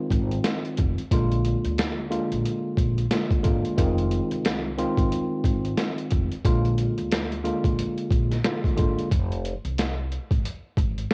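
A compressed, pitched-down sampler drum kit sits up front with a thumpy kick, medium-tuned snare and hi-hat, its muffled sound carrying 12-bit grit and a cassette tape warmth in this tough, moody boom-bap hip-hop cut at 90 BPM with a 16th-note swing in F dorian. A worn, slightly out-of-tune tine electric piano, lightly overdriven and filtered as if through built-in speakers, comps on Fm7 and Bb7 while a woody pizzicato upright bass with steel strings holds the low end. The piano drops out at 9.1 seconds for a short break, leaving bass and drums in a small room with light reverb and a homemade cassette feel.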